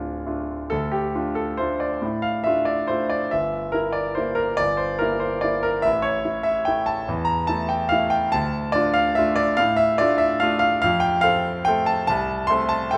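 In 3/4 at 142 BPM with uneven beats and free rubato, this graceful, playful classical piano waltz in D minor, cut from a longer piece, features a solo concert grand that sounds brilliant and polished, with deep bass and short sustain held up front in moderate recital-hall reverb as the harmony moves from Dm through Edim/G and A, back to Dm, and on to F by 10.8 seconds.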